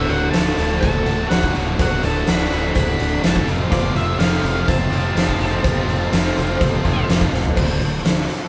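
A sunny, driving classic rock passage opens with the guitars, bass and organ together, the drums entering a moment later and the cowbell just after: a dark octave-fuzz lead guitar carries the melody over a quieter second fuzz line, while three overdriven and distorted guitars churn out a riff above a fuzzed, picked electric bass. A punchy, fat-snared acoustic kit sits up front in a bright stone room, with a metallic cowbell and a very quiet, shouting tonewheel organ holding sustained chords through a slow rotary speaker with key click. The chords move from D to F at 3.5 seconds, and a drum fill at 7.3 seconds brings the harmony back to D as the lead lines stop at 7.0 seconds.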